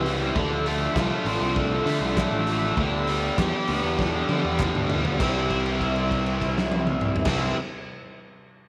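A straight 4/4 groove at 99 BPM drives this wistful, jangly indie rock excerpt in C major, with a raw garage drum kit that pairs a punchy kick with a saturated, gritty tone, and a drum fill from 4.0 s leading into a held note at 5.2 s. Two picked, overdriven electric guitars carry the riffs, one crunchy and the other bright and up front with chorus and tape echo, over a fuzzy electric bass. A very quiet, detuned analog pad sustains moody chords and hollow group handclaps sit low from 1.0 s, all inside an echo chamber reverb as the harmony moves from Dm7 to G/D and settles on C.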